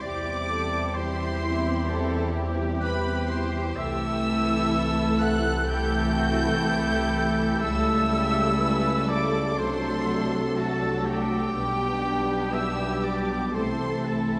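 This is a tender, serene slow romantic movement for symphony orchestra, moving at an unhurried pace with rubato that lets the beats stretch and breathe across a short passage cut from a longer piece. A lush, focused violin section carries the melody in a high register, while a second violin line sits in the background beneath it. A clear, present oboe, an airy silver flute, very quiet and soft in attack, and a distant, roomy clarinet weave secondary lines through the texture. The close-sounding violas provide bowed accompaniment, French horns and trombones hold sustained chords, and a trumpet section adds stabs from further back. Cellos and double basses anchor the bass with a smooth, even depth. The orchestra is heard from further back in a reverberant scoring stage, with a faint mains hum beneath the sound, as the harmony drifts through gentle inversions, reaching Am/C at 13.5 seconds.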